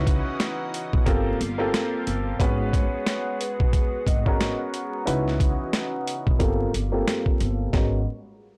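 Reflective and moody, this short boom-bap hip-hop excerpt in G# minor moves at 90 BPM with a 16th-note swing, as a gritty, pitched-down sampler drum kit with a thumpy kick and high-tuned snare sits up front beside a worn, slightly detuned upright piano and a woody pizzicato upright bass, while a lush, chorused sawtooth pad hangs in the background and a mellow soft-mallet vibraphone melody with slapback echo enters at 2.7 seconds over C#m11, Gm11 and G#m11 chords, all wrapped in a blown-out, overdriven sound with vinyl crackle, light reverb and a filter sweep.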